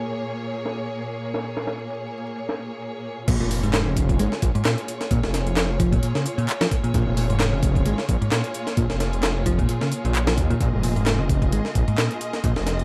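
Breakbeat with a funky, energetic drive at 131 BPM, its swung sixteenths opening on a Bbm7 as distant, lush bowed strings pump against the sidechain while a gritty, compressed sampler-style breakbeat kit with a thumpy kick and high-tuned snare sits up front behind low-pass filtering. At 3.3 seconds the drop arrives, bringing a menacing, thick detuned saw bass, a direct picked electric bass riff carrying digital delay, and an overdriven house kit of bright hats and handclaps tucked into the background. Vinyl crackle hangs over the whole fragment, which is cut from a longer piece.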